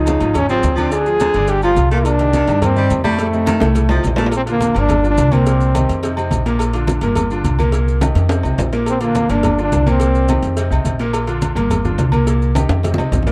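A punchy, up-front trombone with light vibrato carries the melody of this joyful, danceable salsa at 212 BPM in Bb major, returning at 8.9 seconds after a pause, with a distant, roomy baritone saxophone adding a second line until 4.2 seconds, all over a brilliant concert grand piano, a woody, thumpy pizzicato upright bass, ringing agogo bells and timbales, thick-skinned low congas, background cowbell and bongos, grainy maracas, and recurring drum fills in a dark production with light reverb.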